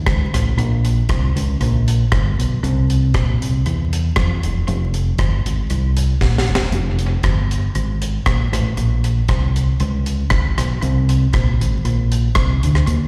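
A dark, round fingered electric bass opens this mischievous, driving ska cut in F minor at 117 BPM, sitting punchy and up front. A dry acoustic reggae kit joins at 0.1 seconds with hi-hat, tight kick, rim click and a high-tuned snare, the whole kit touched by tape echo, and a drum fill at 6.2 seconds leads into the repeat of the opening section. It sounds like a live gig heard through the venue's PA, with recital hall reverb and a layer of vinyl crackle.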